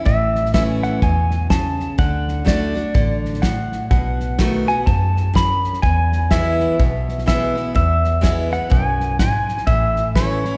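Bathed in a moderate stage reverb with the spacious air of a church or concert hall, this heartfelt, easygoing honky-tonk and classic country excerpt swings at 125 BPM in A major. A twangy, compressed pedal steel guitar, played with fingerpicks and slide, carries the melody up front with volume swells over a bright, full-bodied picked dreadnought acoustic guitar, a dark, round, foam-muted vintage electric bass and a cloth-damped, thuddy drum kit with a fat snare, tight kick and hi-hat.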